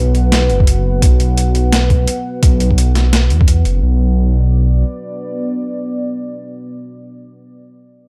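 A deep, warbling ambient pad with chorus and sidechain pumping opens this spacious, tense half-time drum and bass excerpt in B minor at 171 BPM. It is joined by an up-front, rumbling detuned saw bass with tube saturation that stops at 4.8 s. A gritty, pitched-down sampler-style kit of hi-hat and high-tuned snare plays from 0.1 s to about 3.7 s, joined by a thumpy, overdriven electronic kick from 0.6 s to 3.5 s, all in a light digital ambience, before the pad holds a Bm chord alone to the end.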